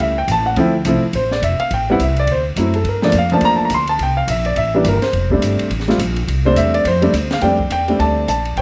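Sophisticated and swinging, this short excerpt from a longer jazz piano trio piece moves at a brisk 210 BPM in 4/4 with a swung eighth-note feel in F major. A natural, up-front baby grand carries the melody and takes a solo from 0.0 to 7.4 seconds over changes that settle on F6, while a woody, growly pizzicato upright bass with steel strings holds down the low end. An acoustic jazz kit of hi-hat, ride, high-tuned snare and boomy kick sits further back in the mix, and the whole trio is set in a light studio reverb.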